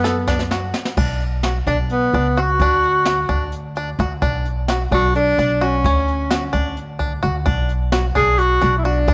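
Set in a straight, driving 7/8, this short section of progressive instrumental band music opens with a brushed drum fill that runs until 1.0 seconds. From there a mellow tenor saxophone takes an up-front solo with vibrato, its pop-style tone sounding distant and roomy, over chords that move between B minor and D. Underneath, a woody, thumpy upright bass sits forward in the mix, plucked on gut strings with a dark weight. A twangy, percussive banjo picks arpeggios with fingerpicks, lower in level than the saxophone. The acoustic jazz kit, played with brushes, pairs dark cymbals with a medium-tuned snare and a boomy kick, all set in a small room with light reverb that frames the intricate piece.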